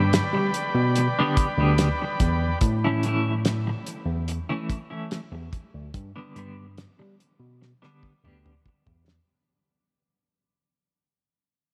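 A steady, straight four-beat pulse comes from a cloth-damped drum kit with a thuddy, mid-forward character, its fat snare and tight kick sitting up front beside hi-hat and toms, with a fill closing things out from 7.6 seconds. This hazy, hypnotic stretch of psychedelic rock is cut from a longer piece and fades out across its whole length. A bell-like tine electric piano carries the bass line in its low register, sounding bright and direct. A clean, dark, fingered electric guitar riff is double-tracked with tremolo and compressed close to the listener. A vintage, buzzy combo organ with light vibrato holds sustained chords only until 2.6 seconds. The harmony moves from G to A and back to G, and a cathedral reverb soaks the mix in a dreamy glow.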